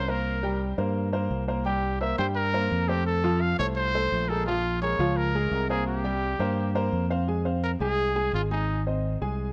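A clear, vibrato-laden solo trumpet and a dark, round, punchy fingered electric bass open this driving, danceable Latin excerpt at 171 BPM in straight 4/4, joined at 0.1 seconds by a present grand piano accompaniment, all three up front in light reverb as the harmony moves through C5, F, Bbm9 and Fm before the trumpet stops at 8.8 seconds and bass and piano carry on to an Ab at the close.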